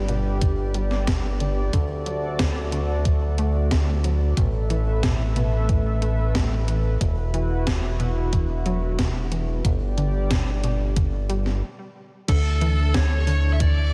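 A glossy, nasal chorused synth bass sits up front in this romantic, uplifting synthwave excerpt at 91 BPM in D major, tuned to A4 = 436 Hz, driven by a thumpy electronic kick and a gated 80s digital drum machine whose snare carries gated reverb. A mellow analog pad holds sustained chords with sidechain pumping, while a lush, detuned unison pluck plays arpeggios in the background through tape echo under a filter sweep, with a stop at 11.6 seconds. At 12.3 seconds a dark, overdriven lead guitar enters with the melody, joined by a shimmering vintage string machine of violins playing a second line.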